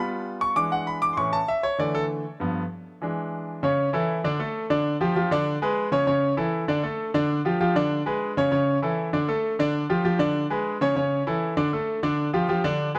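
A bright, up-front concert grand piano carries this festive, danceable Latin passage on its own for the full 13 seconds, with deep bass, a polished sheen and a short sustain that keeps each chord crisp at a brisk 196 BPM in a straight 4/4 feel. The opening moves through G7, E7, A and Dsus2. At 3.6 seconds it settles into a repeating cycle of A, D5, G5 and Bm69 in A major. Close, detailed miking and light reverb give the instrument a present sound in this short section cut from a longer piece.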